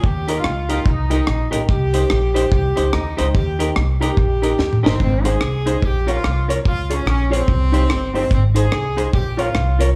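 A cheerful, upbeat ska excerpt opens with a tight horn section carrying the melody with light vibrato, over a woody pizzicato upright bass set up front and a deep reggae drum kit whose dry, dark sound pairs a high-tuned snare and tight kick with rim clicks, hi-hat and toms, touched by dub echo. A moment later, at 0.3 seconds, a clean, picked semi-hollow electric guitar joins as accompaniment, alongside a mellow, worn upright piano playing stabs from the background. That piano has a boxy, slightly detuned character with audible action noise and short sustain, and it too carries dub echo. The groove swings its eighth notes, and a drum fill from 4.6 to 5.0 seconds leads into a second section where the harmony moves through Ab, Bbm, Db and Cm. The whole band sits in a small room with light reverb.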